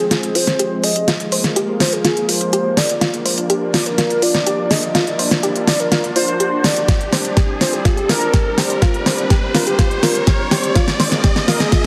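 A velvety, smooth synth lead with vibrato, chorus and delay carries the melody from the start, over a lush, thick unison pad holding sustained chords with chorus and sidechain pumping, while a deep, detuned saw bass rumbles very quietly beneath. This bittersweet, emotional progressive house passage, cut from a longer piece, moves at 124 BPM in 4/4 in F dorian, its chords passing from Fm to Bb, Csus2 and Abadd9 as the whole stretch forms a build-up. A soft, round pluck plays arpeggios colored by analog chorus, cassette tape, delay and sidechain pumping, and filter sweeps run across both the pluck and the pad. An up-front pop kit with crisp hats and a fat snare plays a drum fill throughout, a riser enters at 3.7 seconds, and a knocking electronic kick joins at 6.9 seconds. A moderate room reverb surrounds the parts, and the mix has a heavily compressed, radio-style sound.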